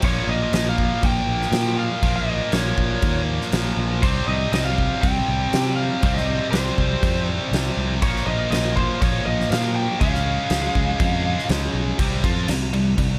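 Aggressive and menacing, this hard rock excerpt drives at 120 BPM in a straight 4/4, centred on C phrygian and tuned slightly sharp to A4 = 441 Hz. A heavy high-gain guitar, distorted, double-tracked and up front, plays the riff throughout. Beneath it, a growly, punchy picked electric bass sounds bright and is heard both direct and amped. A huge arena drum kit rings out with a hall quality, bright cymbals, crash hits, a fat snare and a punchy kick. A dark, overdriven lead guitar through a small cranked amp carries the melody in a high register from 0.1 s to 11.5 s. The harmony moves from Bbm through C5, Bb5 and Db before settling back on C5 for a short closing section at 12.0 s, all in a small room ambience.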